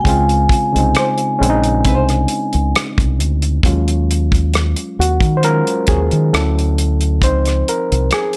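A gritty, overdriven reed electric piano sits up front through a combo amp, comping from the start and taking a solo at 3.6 seconds, when the chords shift from Dbmaj7 to Ebm11. This is a smooth, soulful neo-soul and R&B piece in Eb dorian at a slow 67 BPM in 4/4, with a light swing on the sixteenths. A dark, motor-off vibraphone with medium mallets rings out a brief metallic melody in plate reverb, stopping at 2.7 seconds. A full-bodied, fingerpicked nylon-string guitar enters at 1.0 second with a softer second line, also bathed in plate reverb. Underneath, a round, punchy dub bass played with the fingers and a dry, damped 70s drum kit with a tight kick, hi-hat and rim click hold the groove up front. The harmony later moves through Dmaj9 to Dbmaj9 in this short cut from a longer piece, all set in a light reverb.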